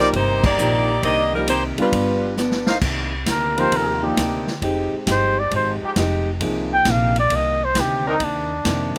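A mellow trumpet solo with light vibrato and scooped notes takes over at 2.8 seconds in this sultry, brassy big band swing excerpt in C minor, moving at 134 BPM in 4/4 with a firm swing on the eighth notes. Before it, a bright, tight saxophone section carries the melody up front with a slapback echo, while a clear trumpet section with soft attacks punches out stabs, and the whole band hits an accent at 0.4 seconds before a drum fill leads into the solo over a G7 chord. Underneath, a grand piano with audible action noise, a woody pizzicato upright bass and a picked acoustic archtop guitar keep the accompaniment going throughout, joined by a natural-sounding drum kit with a punchy kick, medium-tuned snare, hi-hat, ride and crash. Once the solo begins, the harmony settles on Cm9 and Fm9, and a brilliant trombone section enters at 3.6 seconds with sustained chords behind the trumpet. The sound is dry and close, with little reverb, which keeps the horns immediate and the rhythm section intimate.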